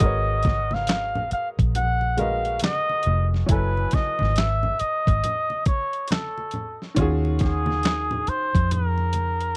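Swung sixteenths in 4/4 give this short cut from a longer R&B and neo-soul piece a loose, unhurried sway, and its mood is smooth and soulful. A gritty, pitched-down boom bap sampler-style kit sits up front, with a thumpy kick, medium-tuned snare, hi-hat and handclaps, all compressed. Alongside it, a dark, foam-muted fingered electric bass adds a round, punchy low end, while low-tuned congas with thick skins enter at 0.4 seconds, struck with hard hands in the background. A clear, woody upright piano, slightly detuned and short in sustain, accompanies through minor eleventh chords. Over the top, a cup-muted trumpet carries the jazz-style solo melody in a soft, veiled tone, with vibrato and scooped notes. The dry, close recording has the character of a 1970s studio, with little reverb.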